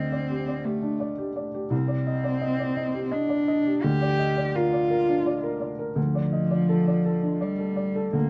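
A felt-muted upright piano and a single bowed cello sound together from the start of this fragile, reflective neoclassical passage in G minor, moving at a rubato 85 BPM in 3/4 and cut from a longer piece. The boxy, mellow piano carries the accompaniment up front with audible action noise, while the dark, woody cello sings a close second line with vibrato, played sul tasto. Moderate studio reverb frames the pair as the harmony moves from Gsus2/D through Cmadd9 and Bb/D to Dm, both parts continuing until 8.3 seconds.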